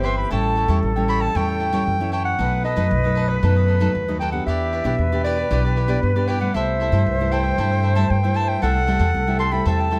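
Close, detailed microphones and a light touch of room reverb give this lively, joyful samba a clear, intimate sound, in E minor at 116 BPM with a straight 4/4 feel, cut from a longer piece. A clarinet in classical style carries the solo melody from B4 up to C6, its warm tone set in plate reverb. Beneath it, an airy silver concert flute plays a tongued second line with vibrato, sitting distant in the mix. A bright, crisp cavaquinho is picked in the middle register while a classical nylon-string guitar is fingerpicked lower down, with the odd finger squeak audible. The woody pizzicato upright bass, strung with steel, sits up front and anchors the harmony as it moves through A7, B7, Em7 and C6 across the 10 seconds.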